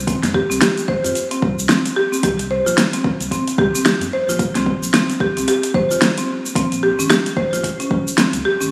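Organic downtempo at 111 BPM with a swung, mystical feel, this short cut from a longer piece sets a buzzing, woody marimba playing up-front arpeggios with delay over a round sine sub bass, a deep house kit of cabasa, metallic hats and fat snare, and a deep, tape-warm electronic kick that drops out at 8.0 s, all moving from F5 to C5 to Bbm7 in a lush hall reverb with the compressed feel of a phone recording in a studio room.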